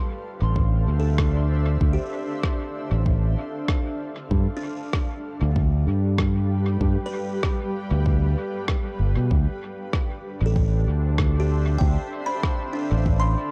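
Deep and spacious, this ambient dub excerpt opens with a blurred, evolving granular cloud pad holding sustained chords beneath buzzing, woody kalimba arpeggios trailed by dub echo, before a punchy, up-front fingered electric bass enters at 0.4 seconds, followed by a layered, tape-warm electronic kick drum at 0.6 seconds and a muffled, pitched-down rim click carrying studio reverb and echo at 1.2 seconds, all moving from Dm7 to G7 and back within a dark digital ambience.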